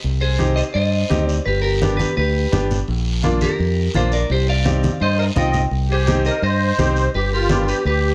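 A fingered electric bass and a raspy guiro open this driving, danceable cumbia excerpt at 169 BPM in C minor, the bass round and up front in its low register. A twangy, picked clean electric guitar takes the melody almost at once, its bright tone carried by spring reverb and slapback echo. A brilliant, woody upright piano fills in the accompaniment while low-tuned congas with a thick-skinned sound add weight to the percussion. At 5.0 seconds a reedy musette accordion joins with a shimmering, vintage second line. The harmony moves from C minor through G and B-flat back to C minor before landing on G7, all within a light reverb that keeps the straight 4/4 groove lively.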